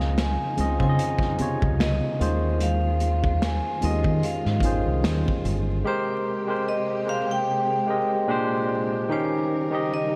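R&B with a neo-soul lean, this soulful, sensual passage is cut from a longer piece and sets a ringing, metallic vibraphone melody struck with hard mallets over a bright, barky electric piano that is lightly overdriven and given a slapback echo, while a distant, lush string section sustains expressive chords with vibrato and portamento. Up front, a round, dark fingered bass and a crunchy, gritty breakbeat kit with a tight kick, snaps and hi-hat join very quiet high-tuned congas, and all three fall silent by 5.8 s. A moderate, lush hall reverb gives an arena-sized sense of space, and vinyl crackle runs underneath.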